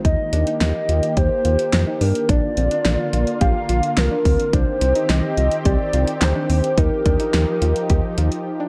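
A hollow, woody clarinet-like synth lead carries the melody in this melancholic, cool synth-pop excerpt, its mellow tone colored by vibrato, chorus and a slapback echo. Beneath it, a lush, warbling unison pad holds sustained chords built from detuned sawtooth voices, moving through Eb, Bb, Cm and Ebadd9. A soft, gentle pluck sits in the background with chorused arpeggios and its own slapback echo, while a deep, evolving analog bass with ring-modulated edges sits up front. The electronic pop kit is layered, with a punchy kick, a fat snare, handclaps and hi-hat in a straight groove. The dark, warm production is wrapped in light digital reverb, and a break arrives at 8.5 seconds as the parts fall away by 8.7 seconds.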